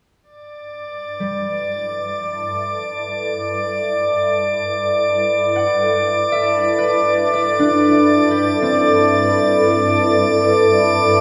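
Weightless and warm, this ambient excerpt drifts at 59 BPM in G major, opening at 0.5 seconds with a glassy, drifting glass-harmonics texture of calm sine overtones, soon joined by fingerpicked concert harp arpeggios ringing through a diffuse ambient delay and a dark, shimmering pad holding sustained chords with chorus and phaser. Both pad and harp fade in across the passage as the harmony moves from Gadd9 to Cadd9/G at 8.4 seconds. Everything sits in a vast, echoing cathedral reverb with a long 5.5-second tail, giving the sound an ethereal, suspended glow.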